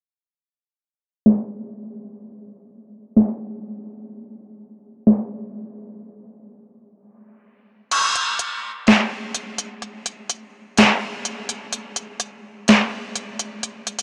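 Heard through worn, warbling cassette tape with a drifting pitch, a low-pass haze and a huge ambient reverb, this hip hop excerpt floats in a dreamy half-time feel. A smooth, electronic R&B drum kit sits up front from 1.3 seconds, its sharp snare, crisp hi-hats and crash cymbal roughened by overdrive and vintage 12-bit sampler grit. A filter sweep runs through the first section, which closes with a short break from 7.0 seconds, and from 7.9 seconds the second section carries on with the kick muted.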